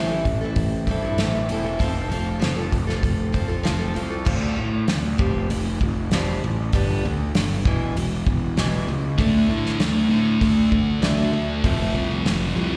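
Quiet-loud alternative rock in a dark, cathartic mood, this live-gig fragment heard through the venue's PA in a recital-hall reverb sets boxy, fresh-stringed parlour acoustic guitar arpeggios with slapback echo over a growly, overdriven fuzz bass and a loose, up-front indie drum kit with a fat snare and tight kick, moving from Am to F and on through Dm7 and G before a thick, distorted fuzz guitar riff enters at 9.2 seconds.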